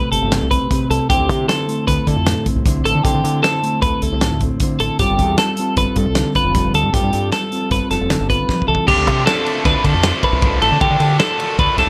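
A dark, clean electric guitar with a vibrato effect opens this playful, intricate math rock and midwest emo excerpt, joined at once by bright, twangy twelve-string electric guitar arpeggios that sit up front in plate reverb. A growling, overdriven fingered bass and a loose indie drum kit fill in the groove in 5/4, the kit sounding acoustic and small-roomed, with dark cymbals, a medium-tuned snare and a punchy kick. The harmony moves from Am9 through D7sus2 to G9sus4, giving the passage an airy, unresolved colour. A drum fill at 8.5 seconds leads into a new section at 8.9 seconds, where the chord shifts to Dm7 and a biting, double-tracked overdriven guitar enters with a riff. The whole piece sits in a moderate studio reverb, and it is cut from a longer piece.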